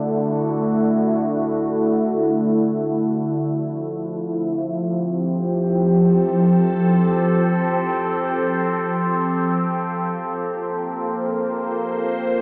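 An evolving wavetable pad plays alone throughout the recording, sustaining a detuned sine tone that morphs and warbles with a vintage, mellow character. This short ambient passage moves in free time and feels serene and luminous. The pad sits up front and spans from D3 to C5, shaped by a slow attack and a long release. A phaser, the pad's own reverb and a diffuse ambient delay colour its sound, all bathed in a huge, wet ambient reverb with a long tail. The harmony rests on D, shifts to F at 3.5 seconds, and settles on Bbsus2 at 10.4 seconds, with a dark, warm production.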